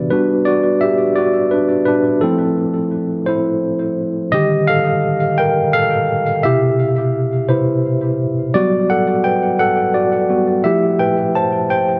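A slow 6/8 pulse at 57 BPM, counted in dotted quarters with a straight feel, gives this short R&B cut from a longer piece an unhurried sway. A tine electric piano plays alone from 0.1 to 12.0 seconds, ranging from B2 up to A5, and sits up front in the mix. Its tone is worn and slightly out of tune, lightly overdriven and heard through built-in speakers, with tape echo trailing its notes. The harmony drifts through lush extended chords in G major, moving from Gmaj7 to Fmaj7 and Ebmaj9 before settling through Cmaj7, Gmaj9 and Fmaj9. A moderate plate reverb lends the room a soft glow, and the mood is sensual and intimate.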